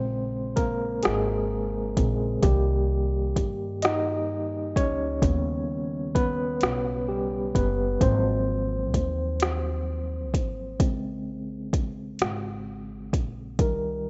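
Slow six-eight R&B in Bb minor at 43 BPM, this sultry, late-night fragment from a longer piece is led by a barky, overdriven tine electric piano with fast tremolo, played through a combo amp and sitting up front as it solos across the whole 14.1 seconds over chords moving from Bbm9 through Cm7, Eb7alt and Ab13. Beneath it, a woody, dark pizzicato upright bass with steel strings holds the low end, while an electronic, produced drum kit with a soft kick, metallic hats and rim clicks, re-recorded in a large room and placed up front, enters at 0.6 seconds. The sound is dry and rough, like a home demo mix, with the top end dulled above 7.9 kHz.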